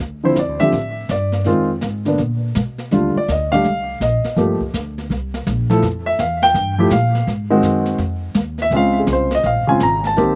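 Upright bass and a brushed drum kit open this swinging, sophisticated jazz piano trio excerpt at 165 BPM, with a dark, mellow grand piano entering at 0.2 seconds to carry the melody up front through a solo that runs the full length. The woody, pizzicato bass anchors the low end while the brushes, hi-hat and boomy kick sit further back, and a slapback echo touches both the drums and the short-sustained piano. The sound is dry and open-air, with little reverb and a muffled top end, as the chords move from D7sus2 through Ebmaj9#11 and Ab7 before settling on Dbmaj7 at 8.7 seconds.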